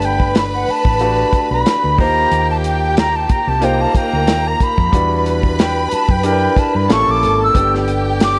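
A lush 1970s-style soul excerpt in G major opens with a reedy, airy silver flute taking a close-miked solo with tape echo, carried over bowed studio strings with focused vibrato, a clear grand piano with deep bass, a round, hollow-body fingered electric bass, and a dry, dark drum kit of tight kick, medium-tuned snare and hi-hat placed up front. At 92 BPM with a light sixteenth-note swing, the romantic mood unfolds as the harmony moves from Gmaj7 through Eb6, Em7 and A7b9 before resolving to G. Light reverb gives the whole ensemble a soft sense of space.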